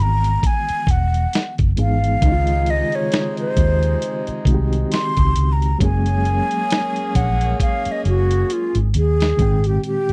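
R&B and neo-soul at a slow, swung 67 BPM, this soulful excerpt is led by a breathy, hollow concert flute soloing up front with a slapback echo, over a reedy electric piano with fast tremolo and a dark, round, foam-muted fingered electric bass. A gritty, compressed sampler-style drum kit with a thumpy kick supports the groove and plays a fill from 7.6 seconds, while a jazz-style horn section with light vibrato adds quiet stabs from 2.2 to 8.9 seconds. Warm ninth-chord harmony moves from Emaj9 through Dbmaj9 and Gbadd9 to Abmaj9 in a dry, close 1970s-style studio sound.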